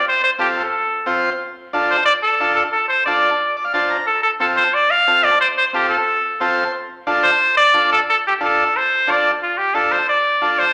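Bathed in a large, wet studio reverb, this driving, danceable Latin piece at 180 BPM in D minor moves between F and Dm as a clear, punchy vintage trumpet with light vibrato carries the pop-style solo melody up front, while a buzzy, overdriven transistor combo organ enters at 0.4 seconds with accompaniment and adds brief fills around 3.4 and 6.2 seconds.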